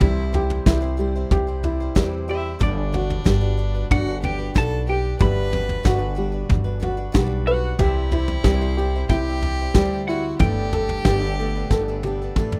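Soft brushed drums with a tight kick set a straight 92 BPM pulse in 4/4 for this hopeful, uplifting indie folk passage in G major, where an up-front pizzicato upright bass anchors the low end, a clean, compressed semi-hollow electric guitar carries the melody with tremolo over a smooth bowed fiddle second line, a dark, woody upright piano plays arpeggios, a bright, boxy swing-style acoustic guitar picks in the background, a very quiet baby grand piano adds clear, long-sustained accompaniment with audible action noise, and a drum fill at 11.7 seconds rounds off this rough home-demo-sounding excerpt.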